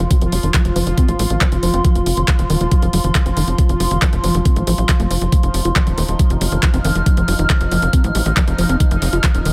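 Psychedelic trance at 138 BPM in a straight 4/4, this short excerpt feels driving and trippy, built around an F5 chord. An overdriven electronic kick with a knocking punch sits up front, entering at 0.1 s and holding the pulse until 9.3 s. Overdriven handclaps and bright hi-hats from a drum and bass kit ride alongside it, and a tight, punchy sequencer bass of sawtooth and square waves with ring modulation plucks low and saturated, also up front. Farther back, a squelchy, resonant acid bass riff with chorus and digital delay weaves through, while a bubbling texture of random filter steps holds sustained chords with chorus and its own reverb. High above, a warbling, nostalgic, lo-fi pad with detuned square and triangle waves adds a dark, vintage haze, and the acid line, bubbling texture and pad all carry sidechain pumping, with light reverb around the mix.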